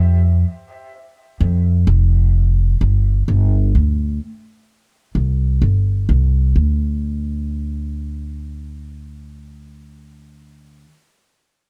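Meditative and hypnotic, this short reggae excerpt moves at an unhurried 64 BPM in a straight 4/4 feel. A lone acoustic upright bass carries the whole piece from 0.0 to 10.9 seconds, plucked pizzicato on steel strings and ranging from F1 to F2. Its tone is woody, dark and growly, with a thumpy attack that sits up front in the mix. The room sound is dry, with little reverb, which keeps the bass close and immediate. The passage falls into two parts, with a shift at 6.5 seconds before the fragment is cut from the longer piece.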